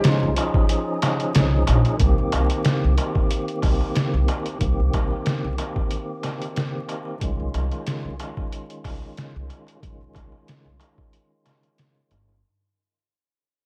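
Trip hop at 92 BPM in 4/4 with a light sixteenth-note swing, smoky and cinematic, set in a dark production with vinyl crackle. A breathy, mellow wooden flute opens with a very quiet, distant phrase on F4 that lasts only until 0.7 seconds, unsteady and touched with vibrato. Up front, a fat, lightly overdriven tonewheel organ carries the accompaniment through a fast rotary speaker with audible key click, tremolo and tape echo, moving from Dbadd9/C to Cm7 and back. A compressed, pitched-down sampler-style kit brings a thumpy kick, a medium-tuned snare and hi-hat with gritty, tape-warm character, while a crisp metal-shell darbuka sits far back in a large room. A woody, growly pizzicato upright bass with steel strings anchors the low end up front, and the whole excerpt fades out from 2.0 seconds onward.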